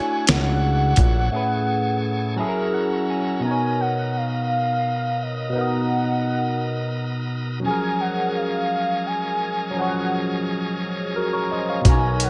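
Slow, tender six-eight R&B at 57 BPM, cut from a longer piece, where a velvety, vibrato-touched synth lead carries the melody with chorus and delay over a barky, phased tine electric piano and a bright, shouting tonewheel organ that holds chords through overdrive and a fast rotary speaker, while a fat analog bass and gritty, thumpy sampler-style drums appear from 0.3 s and fall away by 1.3 s for a break that closes with an electric piano fill. The intimate harmony then settles into B lydian from 3.4 s under light reverb, and the drums and bass return at 11.8 s, the drums slightly ahead of the bass.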